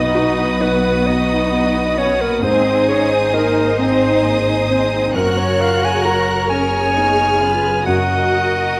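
A moderate scoring-stage reverb surrounds this short cinematic fragment, cut from a longer piece, with a bittersweet, moving mood and a rubato feel in 6/8. A lush symphonic violin section carries the high melody with focused vibrato, while a smooth studio violin section and a solo clarinet in classical style weave second lines throughout the 8.8 seconds. Beneath them, a dark, mellow grand piano and an expressive viola section sit in the background, and a warm cello section pairs with a woody double bass section at the bottom.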